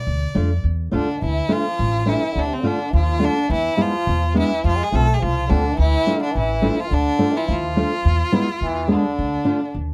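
Klezmer at 106 BPM in 2/4, festive yet bittersweet, cut from a longer piece in D dorian sharp4 and moving from Dm through E and F back to Dm. A clear, focused bowed violin with vibrato carries the melody up front, while a fingerpicked classical nylon-string guitar, dark in tone, and a woody, growly pizzicato upright bass on steel strings support it, and a brilliant trombone with light vibrato and a soft attack adds a vintage second line from 0.9 s. The small room gives a moderate reverb, and the production is dark and warm.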